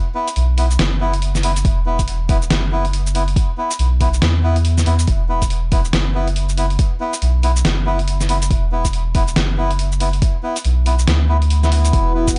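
Deep dubstep at 140 BPM in a half-time, swung feel, meditative and cavernous, set in a dark digital ambience and cut from a longer piece. Reedy, breathy melodica stabs with dub echo open the track, joined by a gritty, pitched-down sampler-style kit of hi-hat, shaker and snare from a large room, a round, up-front sub bass, and a tape-warm layered electronic kick from 1.6 seconds. A moody, detuned sawtooth pad with chorus arrives only at 11.9 seconds, sustaining chords on E5 as the passage closes.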